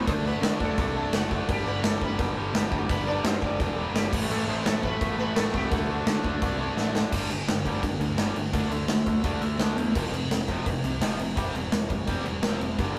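Upbeat, energetic punk rock at 170 BPM in G major, where a buzzing, shimmering sitar melody rides in the background over two bright, tightly distorted guitar riffs, a growling overdriven bass and a punchy, up-front rock drum kit with bright cymbals, until the sitar drops out at 6.9 seconds and a drum fill carries this rough rehearsal-room cut into a power-chord passage from 7.1 seconds.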